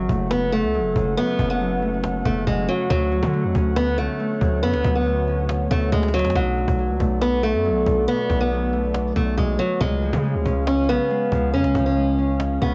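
A home recording on cassette, with light reverb and a small-room ambience, carries this melancholic, hard-hitting trap excerpt at 139 BPM in a half-time 4/4 feel, tuned to A4 = 435 Hz. Up front, a picked acoustic archtop guitar with old strings plays the melody in a dark, boxy tone colored by cassette tape, while a ringing, fingerpicked Celtic harp supplies accompaniment beneath it. A warbly, nostalgic, lo-fi pad of sawtooth and triangle tones sits in the background with chorus and its own reverb, holding mellow chords over an F#m, Dmaj7, Bm7 and C# progression. The distorted 808-style bass is heavy and saturated, its sine core layered with noise, with a fast attack that decays, and it sits aggressively at the front. A close, dry cajon played with hard hands adds woody hits and faint snares from 0.1 s, and a drum fill at 5.9 s leads into the return of the opening section at 6.4 s.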